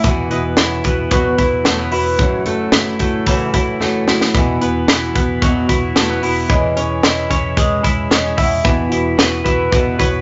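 Light reverb gives this bright, breezy excerpt of jangly indie pop a soft airy glow, and its top end is gently rounded off. At 112 BPM in a straight 4/4, it sits in E major and moves through Esus2, F#m7, C#m/E and back to Esus2. A compressed, twangy twelve-string electric guitar rings out arpeggios up front, while a fingerpicked acoustic archtop guitar adds warm accompaniment beneath it. A ringing, thumb-plucked concert harp carries the melody, drops out at 4.0 seconds and returns at 8.4. A dark, foam-muted, round electric bass with an amped punch holds the low end. A dry compact cocktail drum kit, with a high-tuned snare and punchy kick, sits up front on hi-hat, kick and snare and plays a short fill at 3.8 seconds.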